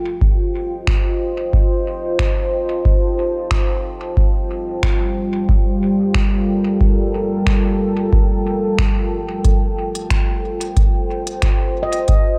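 A deep, tape-toned electronic kick sits up front at 91 BPM in a lightly swung 4/4, joined at 0.9 s by a crisp, roomy kit of finger snaps and hi-hats trailing dub echo, setting a meditative ambient dub groove in this short section cut from a longer piece. Alongside, a dark, detuned sawtooth pad with a sub-octave sine and slow attack holds sustained chords from F7 to Gm9 and back, thickened by chorus and its own reverb. At 11.8 s a mellow, ringing handpan adds a brief arpeggio with a gritty, band-limited sampler character, all set in a dark, warm production with light reverb.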